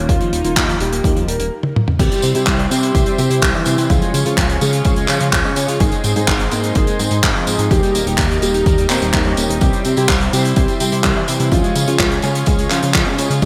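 A straight 4/4 pulse at 126 BPM, driven by a punchy, tape-warm electronic kick and a dry, up-front 70s kit with handclaps, tambourine, hi-hat, toms and crash under gated reverb, carries this bittersweet, danceable italo disco excerpt, where a glossy pulse-wave synth bass with tube saturation, a dark, deep-bassed grand piano melody with chorus and delay, a detuned sawtooth pad, a twangy, slightly broken-up guitar arpeggio and, after a drum fill ending at 2.0 seconds, round, vibrato-tinged synth brass stabs move through chords from Ebadd9 to C, Db and Ab in a lush hall with bright 1980s digital sheen.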